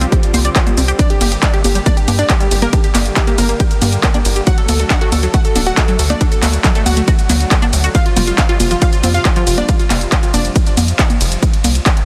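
Opening all at once with an overdriven house kit of congas, handclaps, hi-hat, ride and shaker, a saturated, wave-folded sequencer bass, a bright, detuned unison pluck melody with delay, a mellow square-wave lead carrying a second line, a thick, nasal chorused pad of sustained chords and a very quiet, phaser-tinged sequenced synth arpeggio, this soaring, emotional uplifting trance passage, cut from a longer piece, brings in a punchy overdriven kick at 0.1 seconds, while the pluck, lead, pad, bass and kit pump against the sidechain inside a dense, heavily limited modern master.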